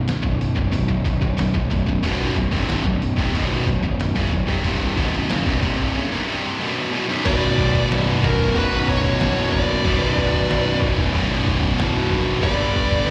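A straight 4/4 heavy metal groove drives this relentless, epic passage: a muffled, pitched-down sampler-style drum kit with a thumpy kick sits under a growly, up-front fuzz bass, while two bright distorted guitars, one carrying slapback echo, churn out the riff in the background. At 7.2 seconds a scooped, double-tracked guitar joins very quietly, a dark high-gain lead adds a second line and a pipe organ principal chorus holds full, baroque-voiced chords. From 7.3 seconds a lead guitar, set back in the mix with slapback echo and delay, carries the melody as the harmony moves from B5 to B minor and later G, all heard as a live gig through the venue's PA with little reverb beyond a touch of recital-hall ambience.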